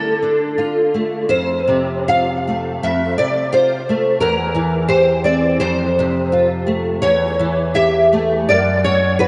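Romantic solo classical guitar in a nostalgic, tender mood, this 9.3-second excerpt lets a fingerpicked nylon-string guitar with fresh strings sit up front in a loose rubato 4/4, its acoustic tone given a shimmer by ensemble chorus and tape echo and bathed in a lush hall reverb that, with the softened top end, makes for a dreamy, reverb-soaked sound.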